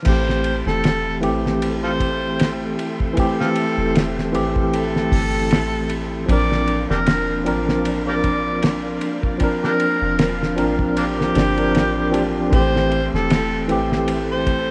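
A cloth-damped drum kit sets a slow, swung 77 BPM trip hop groove in 4/4, its fat snare, tight kick and dark cymbals sounding dry and thuddy with a rolled-off top, while a soft 808-style bass adds deep, round sine tones underneath. A clean tine electric piano sits up front, colored by tremolo, tape echo and a vintage 12-bit sampler grit. An overdriven harmonica carries the melody as a jazz-style solo from 0.1 seconds, amplified and gritty, with vibrato, scooped notes and tongue slaps trailed by tape echo. A full-bodied string machine with cellos holds sustained sawtooth chords in the background, thickened by a sub octave and ensemble chorus. The harmony moves from Am7 to Bbadd9 at 6.3 seconds and back to Am7 at 12.5 seconds in A phrygian, giving this brooding, hypnotic excerpt a rough home-demo feel with light small-room reverb and vinyl crackle.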